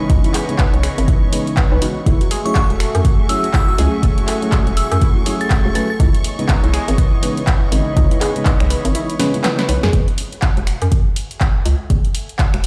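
A swung deep house groove is driven by an overdriven, up-front electronic kick and a tape-warm analog drum machine of punchy snare, handclaps, finger snaps and hi-hats, while a hollow, bouncy FM bass pumps beneath them. Over this late-night, deep bed, a round, mellow FM electric piano stabs out minor ninth chords, a lo-fi, dusty pluck spins detuned arpeggios through dub echo, and a crystalline FM bell sings a bright melody from 2.5 s. A smooth vintage analog pad, a nostalgic tape-like pad and a dark, bowed violin section sit in the background of a large, bare-room reverb. The kick drops out at 8.9 s, a drum fill follows at 9.2 s, and from 9.9 s only the drums, bass and tape-like pad carry on.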